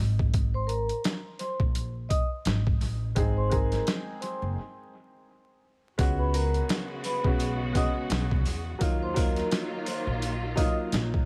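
A woody, growly pizzicato upright bass opens this gritty, dark boom-bap hip-hop excerpt. It is joined almost at once by a compressed, pitched-down sampler-style drum kit with a thumpy kick, a medium-tuned snare and hi-hat, sitting up front with a swung sixteenth-note feel and a touch of analog delay. A vibraphone played with soft mallets carries the melody, its metallic, ringing tone shaped by a slow motor vibrato and softened through filtering and delay. At 3.2 seconds a worn, slightly detuned upright piano adds mellow accompaniment, with audible action noise, long sustain and a cassette-tape colour. From 6.0 seconds a bowed studio string section lays down sustained chords with soft attack and expressive vibrato, while jingly sleigh bells sit close and dry in the background. Small room ambience, an echo-heavy mix and vinyl crackle give the short cut a gritty, dark character.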